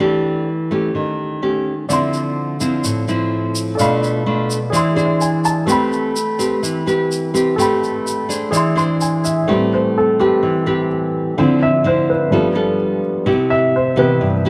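A fingerpicked nylon-string guitar opens this melancholic, wistful bossa nova fragment alone, up front and classical in tone, before a worn, warm baby grand piano and a grainy, close tube shaker join at 1.9 seconds, the piano adding brief fills and then taking a solo from 9.5 seconds as the shaker stops, set in a moderate plate reverb over jazzy minor-seventh and ninth chords.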